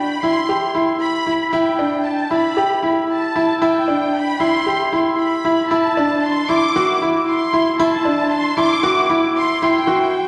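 Electronica at 115 BPM with an intimate, hypnotic mood, this short build-up, cut from a longer piece, is anchored by a brilliant, up-front baby grand piano riff. Above it, a lush bowed violin section carries the melody with soft attacks, vibrato and expressive portamento, sounding slightly distant. A concert hall reverb and a dark production colour the sound as the harmony moves from E minor to A minor at 5.7 seconds.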